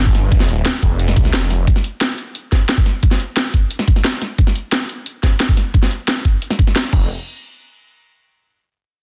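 Dark and futuristic, this technical drum and bass in straight 4/4, cut from a longer piece, opens on a snarling, detuned sawtooth bass with distortion and sidechain pumping, growling up front until 1.7 seconds and returning briefly at 6.9 seconds. From 0.1 seconds a knocking electronic kick and a layered drum kit with a cracking snare, bright hi-hats and crash cymbal drive the groove, both up front and re-recorded in a small room. The mix is dense and heavily limited, with little reverb.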